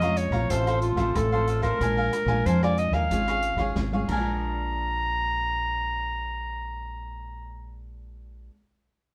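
Recorded live in one room with moderate studio reverb, this lively, yearning samba-choro excerpt moves at 92 BPM in a straight 4/4 over chords such as Bbm7, F/A and Bb7. An up-front, clear clarinet carries the melody in a classical style, while a crisp picked cavaquinho and a fingerpicked nylon-string guitar with a deep classical tone fill out the accompaniment over a round, punchy fingered electric bass. An open jazz drum kit with dark cymbals and a punchy kick plays a fill from 3.8 to 4.4 seconds and drops out at 4.2 seconds, just before the second section begins at 4.4 seconds.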